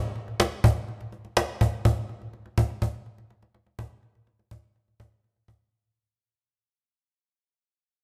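A lone cajon opens this short pop fragment, its woody, acoustic tone sitting close and up front with a faint snare rattle, at a straight 124 BPM in 4/4. A wet echo-chamber reverb with a 1.5-second tail surrounds the drum, and the mood is melancholic and nocturnal. Cut from a longer piece, the 5.7-second clip fades out from its very first moment.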